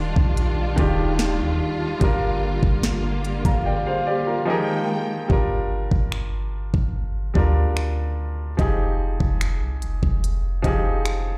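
Up-front trap drums, with a knocking kick, sharp snare, crisp hats and finger snaps, drive this moody, late-night contemporary R&B excerpt, alongside a deep, boomy sine 808 bass with a fast attack and a decaying tone. A natural-sounding baby grand piano with short sustain accompanies over Ebmaj9, Gm7 and Fm chords, while a distant, lush bowed string ensemble with vibrato holds sustained chords until 5.3 seconds. The music drops to silence from 3.7 to 5.3 seconds before continuing, all within a large studio reverb that sounds like a big system playing in a bare room.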